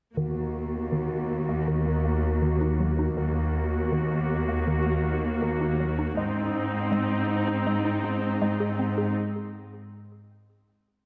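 Heard from further back in a wet scoring-stage reverb, this tense, futuristic cinematic excerpt in Eb minor moves at 80 BPM in a straight 4/4, with a lush, vibrato-rich viola section playing smooth accompaniment, a clear, intense cello section carrying the bass up front, and a woody, warbling wave-folded pluck with chorus and delay tracing mellow arpeggios in the background, all under a filter sweep as the harmony shifts from Ebm to Ab at 6.2 seconds before a break from 9.2 seconds.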